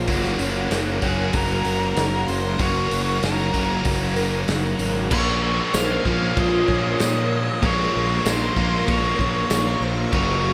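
Melancholic and dreamy, this short shoegaze and dream pop cut from a longer rock piece moves at 96 BPM in a straight 4/4, in Bb minor, with the whole mix soaked in plate reverb and small room ambience. A lush, vintage string machine holds sustained chords in the background through phaser and ensemble chorus, while a boxy, shimmering plugged-in twelve-string acoustic guitar plays octave-doubled arpeggios under lush chorus and delay. A biting overdriven guitar riffs with reverse reverb, a thick, dark fuzz guitar plays a lower riff in the background, and a fuzzed, fingered electric bass drives the low end. A loose indie drum kit with a punchy kick, medium-tuned snare, dark cymbals and a rolled-off top sits in a pumping studio room. An octave-fuzz lead guitar carries the melody from 1.0 s through distortion and delay, the harmony shifts from Gbmaj7 to Bbm9 at 5.1 s, and a jingly tambourine joins quietly in the background from 5.7 s to 9.7 s.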